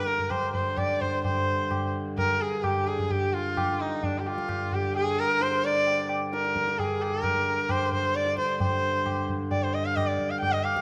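Hindustani classical music in raga bhairavi on G, introspective and longing, moving at 130 BPM in 4/4 and gradually speeding up across this excerpt from a longer piece. An up-front, focused sarangi carries the melody with light vibrato and gliding portamento, its sympathetic strings ringing, over a reedy, dark, breathing pedal harmonium drone and high-tuned tabla with a short ring that enters at 0.1 seconds. A moderate concert hall reverb gives the ensemble an airy sense of space.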